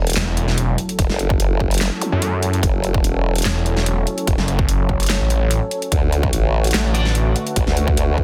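Heavy wobble dubstep in a half-time feel, menacing and weighty, cut from a longer piece. Two bass parts sit up front: a formant-sweep wobble bass with chorus and overdrive, and a snarling, growling saw bass built from detuned unison voices with a moving notch and saturation, which drops out at 7.3 seconds. Beneath them, a punchy, tape-toned electronic kick arrives at 1.0 seconds, and a dubstep kit of huge snare, metallic hats and handclaps plays in a small room. In the background, a lush, airy supersaw pad holds sustained chords with sidechain pumping and a low-pass filter, alongside a deep, dark ambient pad of wave-folded, ring-modulated tones with a sub octave, chorus and reverb, as the harmony moves from F# minor to D. A very quiet impact and zap open the track, and a brief stab of bright, double-tracked high-gain guitar with delay flashes by near the end, all within a dense, heavily limited modern master.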